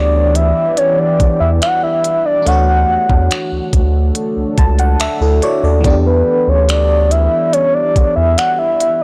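A straight 4/4 groove carries this tender, romantic contemporary R&B excerpt, where a knocking trap kit of finger snaps, crisp hi-hat and kick enters at 0.4 s beneath a round analog bass and an up-front, octave-layered synth lead with chorus, tremolo and digital delay, while a glassy FM electric piano with phaser adds a fill from 4.2 to 5.8 s over a deep, moody ambient pad moving between Em7 and Dmaj7, captured in a lightly reverberant, blown-out and overdriven recording.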